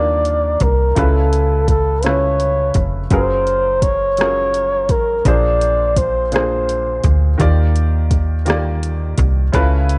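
A breathy, dark flugelhorn carries the melody up front with vibrato, scooped notes and a slapback echo, its whispered jazz-style line falling silent at 7.1 seconds in this tender, slow six-eight R&B passage at 56 BPM. Beneath it, a baby grand piano with audible action noise and short sustain moves through chords from Ebmaj9 to Db7alt, Gbmaj9 and Bb9. A snappy, metallic FM bass with tube saturation sits up front, and from 0.3 seconds an overdriven electronic drum kit adds a soft kick, hi-hat and rim click, heard from a small room. The sound is dry, with its top end held below 11.0 kHz, and the excerpt is cut from a longer piece.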